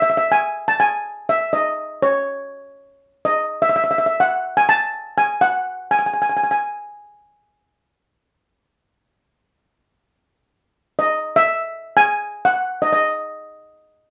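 Calypso at 124 BPM in a straight 4/4, with a tense, intense mood, heard here as a short cut from a longer piece. A lone steel pan carries the music, a double seconds pan played with medium rubber sticks, sitting up front with a metallic, shimmering tone and an airy quality. Its line stays in a high register between C#5 and A5. The pan plays from the start until 6.6 seconds, falls silent, then returns at 11.0 seconds and continues to the close at 14.1 seconds. The studio room adds a wet reverb with a short 0.6-second decay, giving the solo instrument some space around it.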